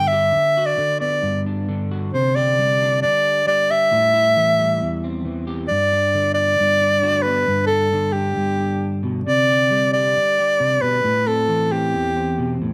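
Highlife at 135 BPM in G major with a carefree, warm mood, this short excerpt features a clear, close-miked soprano saxophone with vibrato and a soft attack carrying the classical-style solo melody up front, over a dark, slightly broken-up, fingered electric guitar accompanying through lush chorus, both parts heard in a moderate small room as the harmony moves from Gmaj7 through Csus2 and Am7 before the second section begins at 5.7 seconds.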